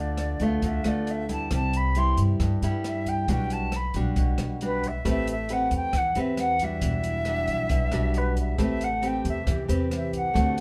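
Moderate studio reverb gives an intimate feel to this melancholic bossa nova, cut from a longer piece at 136 BPM: an airy, vibrato-laden concert flute carries the melody up front over fingerpicked classical nylon-string guitar and woody pizzicato upright bass, while a dark, smooth jazz kit of hi-hat, boomy kick and rim click enters at 0.2 s, and a soft, breathy pad of mellow chorused chords arrives in the background at 8.6 s as the harmony moves from G9/D through Cmaj7, Am9 and Em9.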